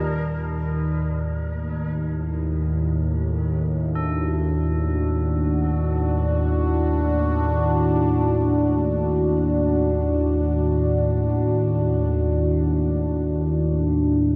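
Free-time dark ambient drone, cavernous and ominous, cut from a longer piece: a bright, detuned sawtooth pad with resonant filter swells, chorus and phaser sustains chords up front over a D/Eb harmony, a deep rumbling drone rumbles low beneath it, and faint, metallic tubular bells ring solemn arpeggios through a diffuse ambient delay as they fade out, the whole scene soaked in a huge reverb with a 7.6-second tail.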